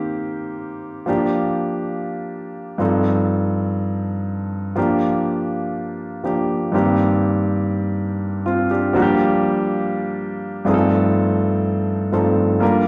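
Glamorous and sultry, this short disco passage cut from a longer piece moves at 122 BPM in a straight 4/4 feel in G minor, carried entirely by a solo grand piano. The piano sits up front with an intimate, natural tone, long sustain and audible action noise, ranging from G2 to Bb4 over chords that circle through Cm7, Gm7 and F7/G. A wet large-studio reverb gives it the air of a band playing live in one room, with a fresh section arriving at 8.9 seconds before the clip ends at 12.9 seconds.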